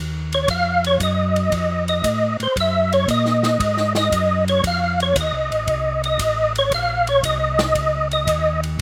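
A mellow, key-clicking tonewheel organ bass line opens this bluesy, smoky soul jazz organ trio excerpt at 116 BPM, swinging in 4/4 through its slow rotary speaker. From 0.3 seconds a dark, percussive tonewheel organ takes the melody up front with third-harmonic percussion, chorus vibrato and slow rotary, over changes from F7b9 through Gb and F7 to Bbm. Beneath them, a polished, airy big-band kit sits low in the mix with a punchy kick, medium-tuned snare, hi-hat and ride, all in a dry outdoor recording.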